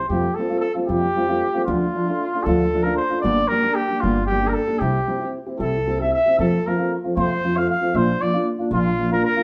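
A roomy studio reverb surrounds this live, one-room take of proud, festive mariachi folk in F major, moving in a loose, rubato 6/8 at about 77 BPM. An up-front trumpet sings the melody in a classical style, warm and lightly touched with vibrato, while a full-bodied, thumb-plucked nylon-string guitar carries the chords from Fadd9 through Dm, Gm, C and F to Bb. Beneath them, a pizzicato upright bass sits lower in the mix with a woody, thumpy, dark tone, and the short fragment ends at 9.4 seconds.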